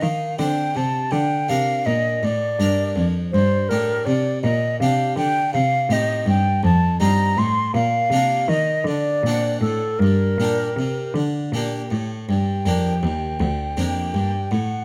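Flowing and radiant, this excerpt from a baroque-style sonata movement moves at 54 BPM in a straight 6/8, starting in B-flat major before turning toward G minor from 3.3 seconds. A mellow, airy silver flute carries the melody up front with vibrato and a crisp attack, while a single bowed cello supplies a rich, smooth bass line close at hand. A brilliant Flemish-style harpsichord, plucked on three sets of strings, fills in the continuo harmony behind them, all in light reverb.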